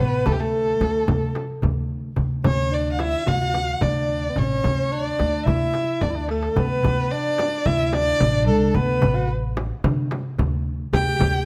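A rich, bowed violin carries the melody up front in this festive Arabic maqam ensemble piece, its expressive vibrato and portamento sliding between G4 and G5 in D maqam rast, tuned to A4 = 445 Hz. Beneath it, a growling alto saxophone plays a second line in a jazz style, its raspy, gritty subtone and scooped notes lending a present, slightly rough edge. A woody, dark upright bass with gut strings plucks a thumpy pizzicato foundation, while a crisp metal-shell darbuka and a warm frame drum, both close and dry, drive a straight 4/4 pulse at 110 BPM from 0.3 seconds. A drum fill at 6.0 seconds leads into a new section at 6.6 seconds. The ensemble sits in a moderate recital hall reverb captured with close, detailed microphones, and the passage is cut from a longer piece.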